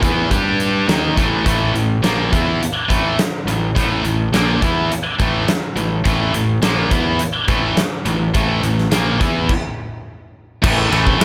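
This hard rock clip runs at 104 BPM in a straight 4/4 and feels driving and heavy, with the tuning set to A4 = 439 Hz. A bright, high-gain distorted guitar, picked and double-tracked, sits up front playing the riff across power chords on G and A. Beneath it, a fuzzed, overdriven electric bass, picked and warm, carries the low end. A huge acoustic arena drum kit fills out the sound with a big room, a punchy kick, a medium-tuned snare, and hi-hat, ride and crash cymbals. The band hits a stop at 9.5 seconds and comes back in on an A chord at 10.6 seconds, just before the clip cuts off at 11.2 seconds. The overall mix is dry, with little reverb.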